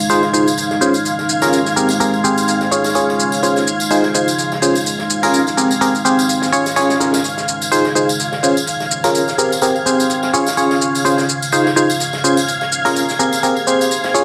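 Swung sixteenths in 4/4 drive this bittersweet, energetic piano house excerpt, where a dry analog shaker, a distant tambourine and a very quiet acoustic kit of hi-hat and snare support a biting, percussive FM electric piano riff up front with phaser, tremolo and dub echo, while a shimmering vintage string machine with ensemble chorus and a filter sweep holds sustained chords above a deep, dark, detuned pad with chorus and built-in reverb, over a looping Fm7, Bbm7, Abmaj9, Dbmaj7 progression.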